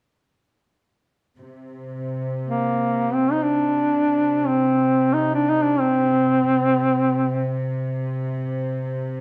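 A mellow, up-front duduk sings a solemn, mournful Caucasian folk melody with vibrato and scooped notes from 2.4 to 7.7 seconds, above a soft-attack, floating, sul tasto cello section that holds a pure bowed drone on C3 from 1.4 seconds, all set in a dark production with a moderate recital hall reverb in this short excerpt cut from a longer piece.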